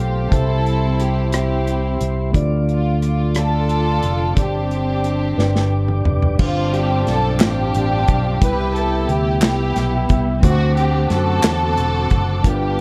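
Soaked in plate reverb with a dreamy, small-room glow, this excerpt of slow, jubilant and reverent gospel in C major at 59 BPM in 6/8 sets a dark, sul tasto string section carrying the melody up front with light vibrato and a touch of delay, over a mellow tine electric piano and a soft, flute-like tonewheel organ with key click and slow rotary speaker in the background, a punchy, amped fingered electric bass, a tight, rolled-off modern drum kit that plays a fill at 5.4 seconds, and crisp group handclaps entering at 7.4 seconds.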